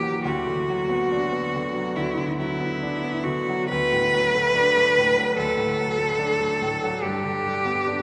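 The rhythm moves in a supple rubato around 71 BPM in 4/4, giving this brief romantic classical passage, cut from a longer piece, a melancholic and solemn character. A single bowed cello carries the melody from E4 to B4 with a rich, focused tone, expressive vibrato and a smooth top end, placed up front. Beneath it, a grand piano supplies accompaniment between D2 and D4, its bright, brilliant and natural sound also close but sitting lower in the balance than the cello. The harmony passes from Bm/D to D at 3.7 seconds and settles on G at 7.0 seconds. Both instruments play throughout the 8 seconds, bathed in a wet cathedral reverb with a long 4.6-second decay.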